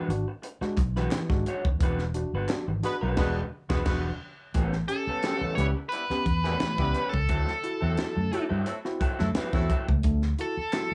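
Funk with a strutting, playful feel, built on a dark, foam-muted fingered bass and a crisp fusion kit with a high-tuned snare and punchy kick, while a twangy, slightly broken-up guitar and a barky, lightly overdriven tine electric piano jab out chords that move from E9 to A9 and D9. Hollow group handclaps sit in the background early on, a clear horn section in octaves with light vibrato and slapback echo enters at 2.8 seconds, and a band accent hits between 1.8 and 4.5 seconds. At 4.9 seconds a nasal, overdriven lead guitar with a parked wah steps up front with the melody, all in a short piece cut from a longer track with light reverb.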